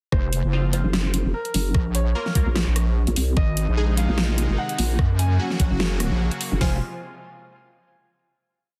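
A saturated, square-wave wobble bass with overdrive and chorus dominates this heavy, aggressive half-time dubstep piece at 148 BPM in F phrygian. From 0.8 s it is joined by a nasal, formant-filtered vowel-sweep wobble bass that answers it, both changing their wobble speed. Two layered, overdriven drum kits supply a knocking kick, huge snare, rim clicks and bright hats, while a dark, mellow concert grand repeats a riff through digital delay, and punchy orchestra-hit-like stabs fire sparse, echoing power chords through phaser and cassette-tape color. From 3.4 s a lush, airy supersaw pad pumps beneath the Ab and Gb chords in a dense, dry, heavily limited mix that closes on an F power chord.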